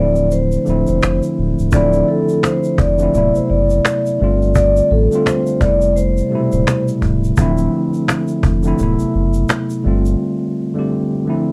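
A hazy, worn cassette-tape sound with warbly pitch drift and light reverb colours this reflective lo-fi hip hop excerpt, which relaxes into a swung sixteenth-note feel. A vibraphone played with soft mallets carries the melody, its metallic, ringing tone close-miked and dry behind a low-pass filter, and it stops at 6.8 seconds. Beneath it, a clean tine electric piano heard through its built-in speakers sits up front with the accompaniment, also low-pass filtered, and lasts until 11.5 seconds. A deep, round dub sub bass with tube saturation holds sustained notes with a fast attack, while a snappy cajon played with soft hands in a small room drives the beat. A grainy, bright egg shaker sits very quietly in the mix, and the harmony moves from Dm9 through D13 and G9sus4 to Fmaj9#11 before cycling back.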